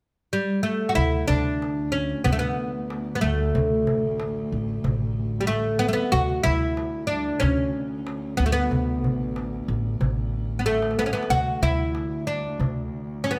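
Arabic maqam ensemble music in D maqam ajam, festive and warm at 93 BPM in a straight 4/4, where a bright, fretless, plectrum-plucked oud carries the melody up front from 0.3 s, joined at 1.0 s by a woody pizzicato upright bass, a dark bowed cello holding a low D drone with vibrato and portamento, and a crisp metal-shell darbuka played with hard hands that adds a short fill at 10.7 s, all set in a moderate recital hall reverb in this section cut from a longer piece.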